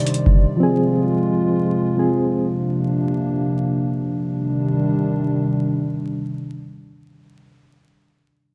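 Vinyl crackle and a moderate concert-hall reverb give this brief hip hop and trap fragment a dusty, haunted atmosphere, drifting in free time with a brooding, eerie mood. A dark analog pad, nasal and detuned with a sub octave beneath it, carries sustained chords through a slow attack and long release until 7.4 seconds. Soft electric-piano-like synth keys, round and mellow with chorus, tremolo and a low-pass filter, sit up front alongside the pad before dropping out at 2.5 seconds. A booming analog drum machine adds a deep kick and metallic hats in a short burst near the start, its tape-warm tone re-recorded in a small room. The harmony moves from Cmadd9 to Fm and Bbadd9, then settles back on Cmadd9 at 4.3 seconds as the second section begins.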